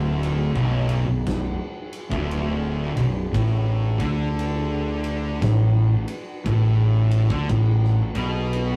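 This stoner and doom metal passage, cut from a longer piece, moves at a slow 58 BPM in 4/4 with a swung eighth-note feel, and its mood is hypnotic and brooding. Two thick fuzz guitars carry the riff from the start, one up front with a warm, picked distortion and the other set in the background with a darker tone. Underneath them, a fingered electric bass spans B0 to D2, its overdrive giving it a growly, amped edge. A big acoustic rock kit joins at 0.2 seconds with a punchy kick, a medium-tuned snare and a ride cymbal, sounding dark and smooth in a large room. The harmony sits on B minor before shifting to Asus24 at 3.3 seconds. Light reverb and tube saturation give the whole passage the rough feel of a rehearsal-room recording.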